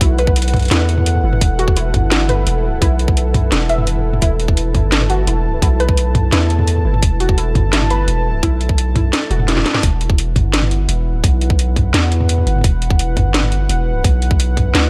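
Half-time drum and bass at 171 BPM in E minor, cinematic and heavy, where a tight up-front electronic kick and a layered kit with a cracking snare, metallic hats and toms pair with a deep, sine-toned 808-style bass under a moody, gritty analog pad with sidechain pumping, while a warbling lo-fi pluck arpeggiates through chorus and delay and a very quiet pulsing gated texture hovers on B4 until both drop away at about 9.7 to 9.8 seconds, just as the kick cuts out for a drum fill from 9.5 seconds before the second drop in this dry, compressed excerpt.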